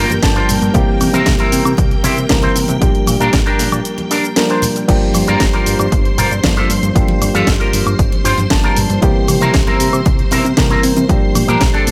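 Nu-disco with a sensual, sleek mood, cut from a longer piece and riding a straight feel. A punchy, tape-touched electronic kick sits out front, joined by a house kit with a cracking snare, warm hats, cabasa, woodblock and crash, all in a small room ambience, while very quiet congas add a saturated acoustic layer. A fat, detuned analog bass with a moving notch pumps under the sidechain, and an overdriven, barky reed electric piano carries the accompaniment through a combo amp with delay and the same pumping. A dark, clean electric guitar plays a picked riff through an envelope filter, with analog chorus and delay. Behind them, a lush string machine holds slow-attack chords with ensemble chorus and a sub octave, cycling through Gm7, C7 and Bb6 in a dry, close mix.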